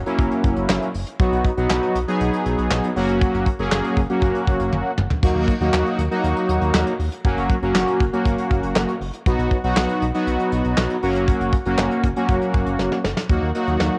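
A straight 4/4 pulse from a soft brush drum kit with a tight kick, handclaps and fills near 4.7 and 12.8 seconds carries this nocturnal, melancholic synth-pop excerpt, where a round, deep analog bass sits under bold, fat analog synth brass with chorus and filter sweeps, all colored by cassette tape grain, spring reverb and a small home-room feel as the chords move through Gb7, B, Gb and Ebm.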